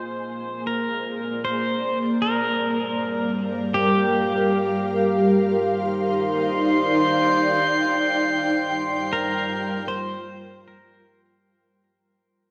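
Serene and peaceful, this ambient excerpt floats in a vast, echoing cathedral-like space, drifting over gentle chords that move from Bb9 through Gm7 and Ebmaj9 back to Gm7. An ethereal, airy pad holds sustained chords throughout, its mellow, detuned tone shaped by slow attacks, long releases, ensemble chorus, tremolo and shimmer reverb. Over it, a bright, twangy electric pedal steel guitar carries the melody with fingerpicks, slide and volume swells, its clean, compressed sound bathed in shimmer reverb and delay. Both the pad and the steel fade in across the whole clip. At 5.8 seconds a glassy texture of drifting overtones enters, calm and sustained, lifted by chorus and shimmer reverb. From 7.3 seconds the music begins to fade out.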